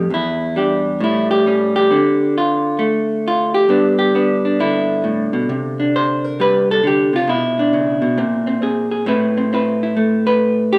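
A clean, picked vintage hollow-body electric jazz guitar plays alone and up front for the full 10.8 seconds of this smoky, swinging solo jazz excerpt, moving through chords such as Em7, A7, Dm7 and G69 before settling on Amadd9, its tone set in a moderate, large studio reverb.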